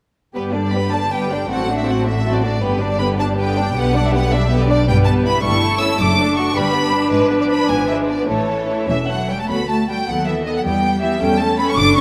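A wet concert-hall reverb surrounds this cheerful, spirited string orchestra movement in a quick classical-period style, moving at 106 BPM in 6/8 with a rubato feel in G major, cut from a longer piece. An up-front, focused chamber violin section carries the melody over a second violin line with a studio sheen. A distant, smooth viola section provides accompaniment, and an even cello section sits in the background while a smooth, even double bass section anchors the bass. Every section is rich with vibrato as the harmony passes through D7/A, G#dim7 and B7/D# before turning toward E minor near 10.6 seconds.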